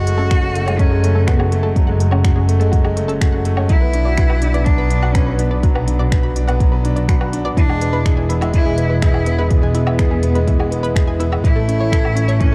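Piano and strings electronica in F# minor at 124 BPM, this hypnotic, intimate excerpt opens with a rich, distant solo cello carrying the melody over a clear concert grand piano riff touched with tape echo, while a muted, veiled chamber double bass section, bowed con sordino with vibrato, pumps up front beneath them. An organic electronic kit of finger snaps, crisp hi-hat and woodblock, re-recorded in a large room, enters at 0.1 seconds, and an electronic kick drum with a deep, layered thump arrives at 0.3 seconds. Round analog pluck arpeggios with chorus and tape echo, entering at 0.2 seconds, sit in the background as the chords move from F#madd9 through Bm and E to A, all set in a dark small-room production.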